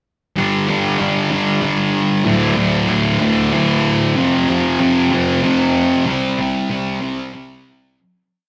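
A thick fuzz guitar carries this short rock piece alone from 0.4 seconds, driving eighth-note power chords through a bright, distorted, double-tracked tone that sits up front. The mood is restless and cathartic, moving at 63 BPM in 6/8 with a straight feel and tuned to A4 = 442 Hz. Picked chords shift from G5 to D5, then F5, and finally C5, spanning D2 to C4, with analog delay trailing behind the fuzz. The whole piece plays as a single pre-chorus, and it fades out from 6.1 seconds until it ends at 8.0. Heard through a wet studio reverb, the rough rehearsal-room recording gives the guitar a raw, unpolished edge.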